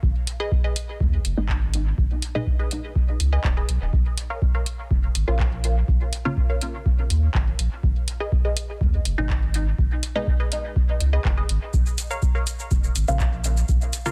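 Over a straight 4/4 pulse at 123 BPM, this hazy, hypnotic dub techno excerpt in Bb phrygian sets an up-front deep kick and a round, pumping sub bass under a booming analog drum machine of handclaps, metallic hats and shaker with dub echo, while two filtered dub chord stabs, one a mellow, detuned sawtooth riff with phaser and cassette-tape color, the other a brighter, wave-folded stab entering at 1.4 seconds, move between Abm and Bbm, a filter sweep shaping the synth stab until 3.9 seconds in a dense, heavily limited modern master.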